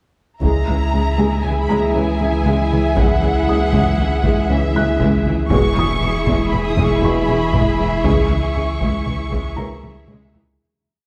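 Driven by a big taiko drum ostinato struck with hard sticks in a small room, this tense, relentless hybrid orchestral and electronic film cue moves at 118 BPM in a straight 5/4, set in C# dorian and passing from C# minor to E and back to C# minor. The violins carry a lush, expressive bowed melody high in their range with a smooth top, while a second violin line holds sustained chords beneath it, and the violas push a close, driving ostinato in the background with vibrato and portamento. The low end pairs a deep, punchy sine sub bass with a pitch-drop attack and a focused, very quiet double bass section doubling the line, while the cellos add their own driving bass ostinato. Very quiet French horns and trombones punctuate with short accented chords, and from 1.3 seconds a moody, detuned analog pad swirls in with chorus and phaser. A felt-muted upright piano, mellow and intimate with audible action noise, drops sparse single notes through tape echo. 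The dark, warm mix sits in a moderate concert hall, fading out from 8.0 seconds as a drum fill closes the piece at 10.6 seconds.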